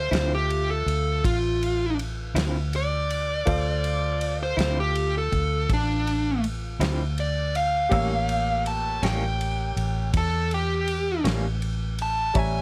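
A dry, close-sounding slow blues in D minor at 54 BPM in 12/8, smoky and soulful, where a dark, overdriven lead guitar solos up front from the start while a foam-muted, round electric bass, a slightly broken-up guitar with tremolo through a small old amp, a woody upright piano in the background, and a soul drum kit with a fat snare, tight kick and dark ride cymbal move from Dm9 to A7b9 at 7.9 seconds in this short section cut from a longer piece.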